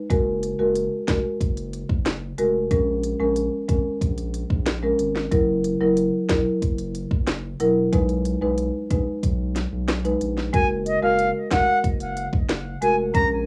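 A woody, close-miked marimba with sidechain pumping accompanies this bouncy, tough dancehall cut at 92 BPM through Gbadd9, Bbm7, Gb7 and B6 chords, over a deep, saturated sine sub bass and an electronic afro-pop kit with knocking kick, sharp snare and crisp, tape-warm hats, until a bright, reedy silver flute with vibrato and tape echo enters at 10.5 s to carry the melody, all set in a dry, small-room cassette ambience.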